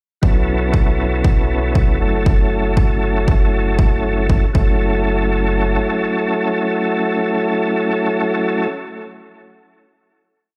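Up-front tonewheel organ stabs, smooth and clean through chorus vibrato, a fast rotary speaker, tape echo and sidechain pumping, lead this short, deep and warm deep house piece in F# minor at 118 BPM with a 16th-note swing, riding over a punchy four-on-the-floor electronic kick and a round, dark, syncopated analog bass riff that also pumps, as the harmony moves from B9sus4 to F#m7, the kick drops out at 4.7 seconds and the bass at 5.8 seconds, and the organ holds a final chord until 8.7 seconds, all heard on a big sound system in a bare stone room with light reverb.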